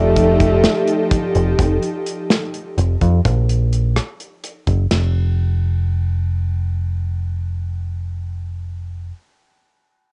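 This driving, bright progressive instrumental opens on an F9 chord, with a breathy tenor saxophone, a detuned, chorused synth pad and a deep, round dub bass sounding together in a fast 7/8 at 253 BPM counted in eighths, in F mixolydian. The saxophone's brief whispered phrase is mellow and intimate in a jazz manner, with vibrato and scooped notes. The airy pad blends triangle and sawtooth tones with a noise layer and a moving notch. A polished, acoustic drum kit enters at 0.2 seconds with a tight kick, a medium-tuned snare, hi-hat, ride and rim clicks. By 1.6 seconds the saxophone and pad have dropped out and the harmony falls away, leaving drums and the dark, amped bass to carry the music until the drums stop at 5.0 seconds and the bass continues alone. The home cassette recording is dry and dulled at the top, with tape colouring the saxophone, pad and drums, in a short cut taken from a longer piece.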